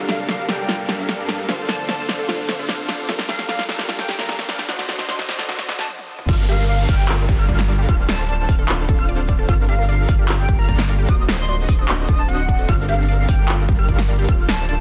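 Future bass in G minor at 150 BPM with a half-time feel, this dreamy, bittersweet excerpt from a longer piece has a build-up under a filter sweep, where a shimmering, very quiet ambient pad, huge detuned supersaw chords with sidechain pumping, an airy lead melody with tape echo, a background unison pluck arpeggio, a riser and downlifter, and a big-room dance drum kit with punchy snare and metallic hats all play, and then after a stop at 5.9 s the drop hits at 6.3 s, where a thick, saturated sub bass, a punchy electronic kick and a second, higher ring-modulated pluck arpeggio join over a dense, heavily limited master.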